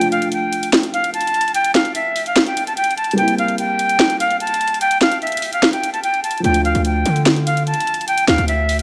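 Dark, reverberant production on a moderate scoring stage frames this eerie, brooding half-time trap excerpt at 147 BPM in D minor, where a breathy, reedy jazz flute with vibrato carries the melody up front over a mellow, intimate baby grand with audible action noise, both softened by low-pass filtering, while an overdriven electronic kit of sharp snare and bright hi-hats drives the Dm to C7 progression until a saturated, aggressive 808-style bass enters at 6.4 s.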